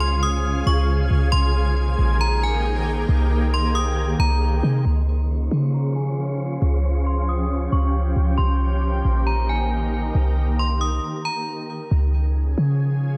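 A deep, boomy 808-style bass sits up front in this floating, dreamy half-time hip hop piece at 136 BPM in Db lydian, beneath a shimmering, detuned ambient pad holding Dbmaj7 and Cm7 chords, a metallic, inharmonic FM bell melody with chorus and delay, and an airy, wind-like noise texture in the background, with a filter sweep from 4.9 seconds and a stop at 11.0 seconds before a Db chord arrives at 11.9 seconds.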